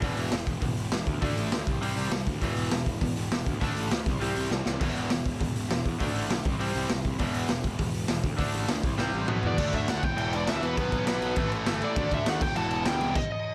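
Driving at a straight 201 BPM in 4/4, this angry, raw punk rock excerpt in E minor puts a saturated, gritty garage drum kit up front, with dark cymbals, a punchy kick and drum fills, all sounding in a small, pumping room. A growly fuzz bass and three picked rhythm guitars (a bright overdriven one, a lo-fi garage one and a very quiet, double-tracked fuzz guitar) play an E5, D5, C5 riff. A high-gain lead guitar enters at 9.5 seconds for the second section, and the band hits a stop at 13.2 seconds, with light reverb throughout.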